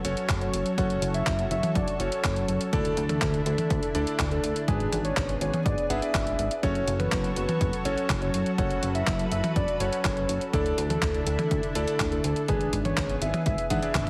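Heavily compressed, radio-like sound with vinyl crackle and light reverb frames this bittersweet, danceable italo disco excerpt, where a soft, round octave-layered synth lead with chorus, vibrato, cassette-tape colour and delay carries the melody over a lush, detuned unison pad, clangy electric grand piano stabs in the background, a glossy chorused synth bass, a clean 12-bit drum machine of handclaps, hi-hat and toms, and a dry, punchy kick entering at 0.3 seconds, with a drum fill arriving at 13.7 seconds.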